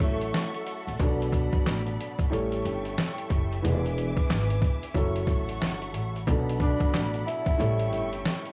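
Recorded at home on cassette, this short excerpt carries a small-room ambience and light reverb that give it a gritty, reflective air. It is a boom-bap hip-hop groove in B minor at 91 BPM in 4/4, swung on the sixteenths and built over a cycle of F#m7, Bm7, A7 and E7 chords. Up front sits a compressed, pitched-down, sampler-style drum kit with a muffled, thumpy kick, a medium-tuned snare and hi-hat, while a pizzicato upright bass with steel strings adds woody low notes until 8.2 seconds. A dark upright piano with audible action noise supplies mellow, intimate accompaniment, and a bowed studio string section holds lush, vibrato-rich chords higher up, both parts coloured by filtering and tape. A growling tenor saxophone sounds briefly at the start and returns at 6.6 seconds, its breathy subtone, raspy edge, scooped notes and analog delay lending a jazz-style solo voice.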